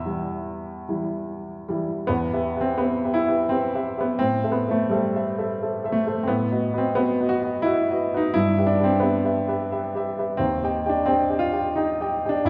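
A baby grand piano opens at once in E minor, playing by itself from 0.0 s to 12.5 s in a romantic character piece that sounds cut from a longer work. The mood is passionate and brooding, moving at 86 BPM in 3/4 with a rubato feel and spanning Eb2 to E6. The harmony passes from Em through Am7 and B7/A to Em/G, then reaches an Ebmaj13 at 10.4 s. A short opening passage gives way to a new section at 2.1 s that carries on to the end. The piano tone is warm and natural, with short sustain and an up-front placement, set in a wet recital hall reverb of 1.5 s that suggests a church or concert hall.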